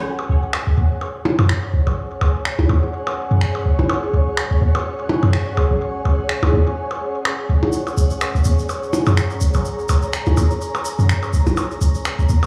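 Clinical and hypnotic, this minimal techno excerpt moves at 125 BPM in 4/4 with a light swing on the 16ths, resting on a C#sus4 chord throughout. A deep, punchy sine sub bass with a pitch-drop attack sits up front alongside layered electronic finger snaps, while percussion blips with digital delay echo through a large room, and a bright, grainy acoustic tube shaker enters at 7.7 seconds. Behind them, a mellow, cloudy, evolving granular pad drifts with built-in reverb, and a flickering, detuned triangle texture hangs in the background with its own built-in reverb, the whole mix carrying the stone-room ambience of a big sound system played in a bare space.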